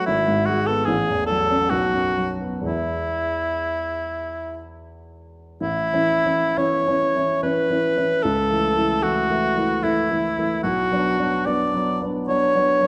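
Serene and warm, this romantic classical duo for cor anglais and grand piano moves in an unhurried 3/4 between 58 and 76 BPM, with a freely breathing rubato. The cor anglais carries the melody in the register from E4 to D5, played in a classical solo style with a light vibrato and placed up front. Beneath it, the grand piano supplies a present, polished accompaniment reaching down to G#1, also up front though a little quieter than the melody. The harmony opens in E major, passing through chords such as F#m7/A and B5. At 5.6 s a new section shifts the music to A major, moving on to A/C# and settling on Bm at 10.6 s. A moderate recital hall reverb and a dark, warm production give the cut a warm, enveloping glow.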